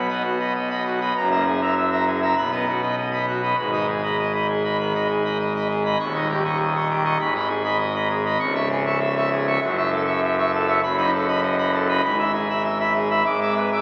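A full pipe organ, brilliant with mixtures and voiced in a romantic manner, sits up front and plays alone throughout this jubilant, majestic classical toccata at a steady 99 BPM in 4/4, spanning a range from C#1 to D6. The harmony moves from B and G#m through D#7 before settling into E major at 8.4 s, arriving on E/G# near the close of this 13.8-second fragment of a longer piece. The organ rings in a wet church reverb, heard through the crackle of a very old 78 rpm record.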